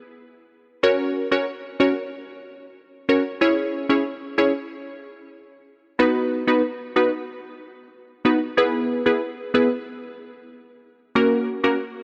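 Dancehall at 93 BPM in 4/4 with a straight feel, this short cut from a longer piece sits in B major and carries a sunny, bouncy mood. A lone wavetable chord stab carries the whole passage, entering at 0.8 s and ringing until 11.8 s, its digital, crisp tone built from detuned unison voices with a fast attack and a decaying filter pluck that keeps it bright and up front. The chords move from F# through C#m, B and E before landing back on F#, spanning a register from A#3 to C#5. A moderate, lush hall reverb with a 3.0 s tail surrounds the stabs, while worn, warbling old cassette tape colors the sound with a warbly pitch drift. The result feels breezy and slightly hazy, a lone synth riding a bouncy dancehall feel.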